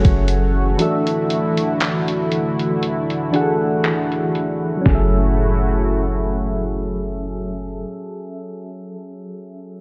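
A dusky, low-passed sound with light reverb frames this short piece of contemporary R&B, cut from a longer track and set in F# minor at a slow 59 BPM with a gentle sixteenth-note swing. Soft, round electric-piano-like synth keys carry the accompaniment with chorus and phaser, moving from F#m9 to E9sus4 and back to F#m9 at 4.9 seconds, and they linger alone after the other parts stop, until 9.8 seconds. Beneath them, a shimmering, retro pulse-width pad holds sustained chords. A deep, boomy 808-style bass sits up front on a low F#. A gritty, compressed sampler-style drum kit brings a thumpy kick, fat snare, hi-hat and handclaps before dropping out at 5.1 seconds. The opening half is shaped by a filter sweep and a break, giving the whole a sensual, longing mood.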